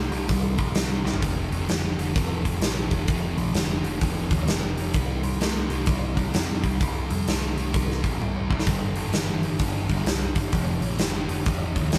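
Raunchy and driving, this blues rock power trio cut with a southern rock edge swings over a double-tracked, thick fuzz guitar riff, a bright, growling picked bass with overdrive, and a huge, punchy arena drum kit sitting up front that enters at 0.1 seconds and throws in fills at 1.0 and 8.2 seconds, all captured live in one room with light reverb as the chords move from C5 through F5 and G5.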